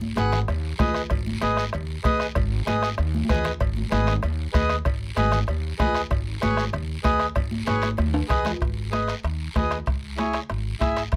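Danceable and driving, this cumbia clip moves at 192 BPM in G# minor, with a reedy, dark accordion up front over a woody, growly pizzicato upright bass. Bright, hard-handed congas, a soft-beater bombo, ringing cowbell and timbales, and a raspy guiro fill out the close, detailed percussion in a light reverb. Drum fills land at 3.1 and 7.7 seconds, and the harmony moves from G#m to C#m at 9.9 seconds.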